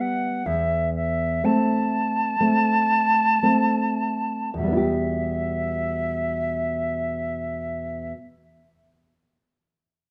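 In a free, rubato 4/4 that drifts between 52 and 68 BPM and slows through the opening 4.5 seconds, this melancholic, solemn romantic duo in E minor is cut from a longer piece. A close, airy concert flute with vibrato and a soft attack carries the expressive melody between E5 and A5, while a dark, full-bodied nylon-string guitar, thumb-plucked in a deep classical style, accompanies from E2 to G4. Both sit up front in a moderate recital hall reverb as the harmony moves from Am/E to Em at 4.5 seconds.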